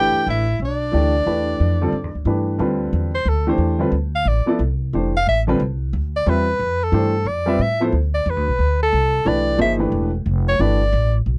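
A soprano saxophone carries the melody up front in this searching, cool jazz passage cut from a longer piece, its warm tone shaped by vibrato, subtone and scooped notes. In the opening moments, a breathy tenor saxophone with a smooth top adds a second line beneath it and then drops out at 2.2 seconds. From 2.6 seconds the soprano takes a solo as the harmony moves from Em7 to Dm9, later returning to Em7. A clear, polished upright piano sits present and up front in accompaniment with short sustain, while a dark, woody upright bass, played pizzicato on steel strings, holds down the low end over swung eighths in 4/4. The sound is dry and close, in the manner of a 1970s studio session, with little reverb.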